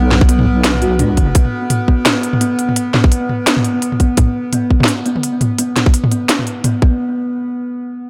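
Cinematic and heavy, this half-time drum and bass excerpt at 170 BPM opens with a deep, dark wobble bass that sounds only until 1.3 seconds, under an eerie, metallic FM drone carrying chorus and its own reverb. A tight electronic kick and a tape-warm kit of cracking snare, crisp hats and toms sit up front, while a woody, mellow kalimba plays arpeggios through a low-pass filter sweep and analog delay. A moderate plate reverb and plenty of echo give the mix an echoing sense of space.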